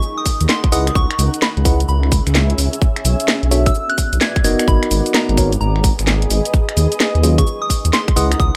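A swung two-step UK garage groove at 129 BPM, cut from a longer piece, bounces with soulful ease: an up-front garage kit of cracking snare, finger snaps, shaker and warm hats sits over a tight electronic kick from 0.3 seconds, a dark, rumbling detuned saw bass enters at 0.4 seconds, and a clean tine electric piano plays delayed stabs through a combo amp from 0.7 seconds, while a blurred, evolving granular cloud pad pumps mellowly beneath and a pure FM bell carries the melody with chorus, phaser and dub echo, all in a light digital ambience over minor chords.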